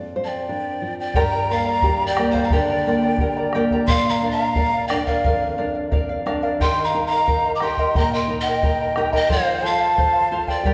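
Andean folk with a festive, earthy mood, where a breathy, hollow wooden quena carries the vibrato-laden melody over a softer bamboo pan flute second line with its chiff. Fingerpicked nylon-string guitar with audible finger squeak opens the excerpt and adds a fill around 5.6 seconds. From about 1.1 seconds a round bombo and a shimmering double-strung charango join in, and the whole ensemble sits in the lush reverb of a recital hall.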